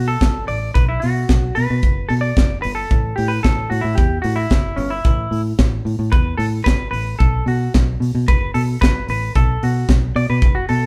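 A clean, compressed semi-hollow guitar and a foam-muted fingered bass open this glamorous, driving disco excerpt in B minor at 112 BPM in straight 4/4. The drum kit joins at 0.2 s with kick, snare, hi-hat and handclaps: a polished, airy small-room sound with a high-tuned snare and a punchy kick sitting up front. The guitar carries a clean solo across the whole passage, its hollow-body tone fingered and warm, ranging from C#4 to D5. Underneath, the direct, punchy bass holds the low end between F#1 and B2, also placed close in the mix. The harmony moves from B5 to A5 at 2.9 s and back to B5 at 7.2 s, all captured as a band playing live in one room with moderate studio reverb.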